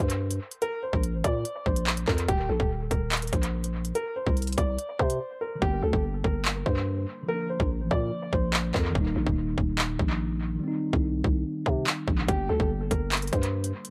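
An overdriven drill drum kit with a hard-clipped kick and crisp hats drives this ominous, tense half-time drill hip hop fragment alongside a growling, buzzy 808-style bass and a dark, woody upright piano melody soaked in tape echo, while after a brief break the hats drop out at 5.6 seconds as a mellow tine electric piano enters, and the piano falls away before returning at 12.3 seconds in a dry, echo-heavy mix.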